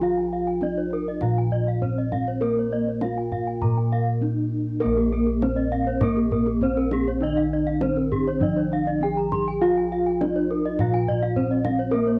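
Bossed bronze gongs sit up front in this shimmering, brilliant excerpt of Balinese gamelan, their round, full, beating tones close-miked and dry, struck with padded beaters and thickened by transformer saturation as they carry the bass line. The music moves at 100 BPM in a straight 4/4, pitched in Bb slendro with a tuning reference of A4 = 438 Hz. The melody rings out on a mellow, soft bronze metallophone played with padded disc mallets, its paired tuning producing shimmering beats and a tape echo trailing behind it. Beneath, a bright metallophone struck with a horn mallet plays an accompaniment from the background. Two more metallophones struck with wooden mallets spin higher arpeggios, also shimmering from their paired tuning. A kendang joins at 0.2 s with deep, soft hand strokes, and the whole passage, cut from a longer piece, carries the character of a home cassette recording in a small room with a moderate reverb.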